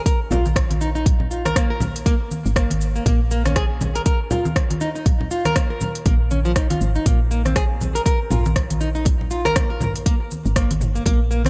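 Lightly reverberant and cut from a longer piece, this driving, earthy afro house groove sets a fingerpicked classical nylon-string guitar playing arpeggios through lush chorus, tape echo and sidechain pumping over a deep, up-front electronic kick, a layered deep house kit with smooth hats, rim click, shaker and toms, bright, close and dry congas, and a soft, round, woody FM bass that pumps with a fast attack and a dark, decaying tone.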